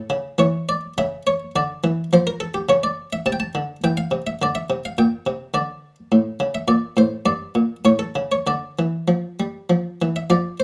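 Moving in a flexible, rubato triple metre at roughly 94-107 BPM, this grave, introspective baroque-style suite movement in D minor is a short passage cut from a longer piece for solo harpsichord. The instrument's buff stop gives its plucked French-style voice a muted, lute-like, dry quality, placed up front in a light reverb and spanning G2 to A5. The harmony passes through C69 and Gm/Bb before settling on D minor at 8.5 seconds.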